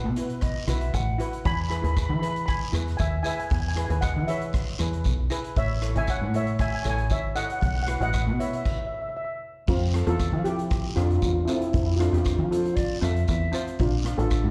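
A bouncy, festive calypso at 117 BPM opens on shimmering lead steel pan with slapback echo carrying the melody over darker, smoother cello pans and a round, foam-muted fingered electric bass sitting up front. A street-band drum kit with a boomy kick and dark cymbals and a raspy, saturated guiro drive the straight 4/4 groove, while a pure, hollow concert flute with vibrato adds a brief second line near the start and again near the end. After a full stop at 8.7 s, the band returns at 9.7 s with the tune lifted from E major to F major, all heard as a live gig through the venue's PA with club reverb in this short cut from a longer piece.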